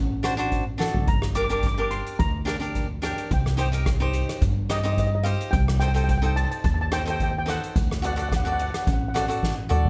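Calypso in G minor at 108 BPM, with a lightly swung sixteenth-note feel and a moody, brooding character, taken from a longer piece. An upright bass opens the passage at 0.0 seconds, plucked pizzicato on steel strings with a woody, thumpy tone, and a cavaquinho and soft-mallet drum kit join almost at once. The picked cavaquinho sounds bright and crisp and sits up front, while the drum kit carries a fat snare, a boomy kick, hi-hat, rim clicks and toms in a big room, with fills at 0.8 seconds and again at the close. From 1.1 seconds a steel pan takes the lead melody, struck with soft rubber sticks for a mellow, shimmering metallic tone, set in a boxy small room with plate reverb and tape echo. The harmony moves from D7 through Gm, Cm and Adim/C before landing on D, and the whole passage is bathed in light reverb.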